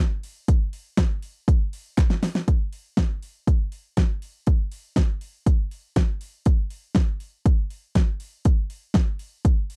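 A punchy, overdriven electronic pop drum kit with a fat snare and metallic hats sits up front in this youthful, nostalgic indie pop fragment in straight 4/4, joined in the background by a crisp group handclap from 1.0 to 2.1 seconds before a drum fill at 2.0 seconds leads into the next section, all captured with a dry, close 1970s-style studio sound.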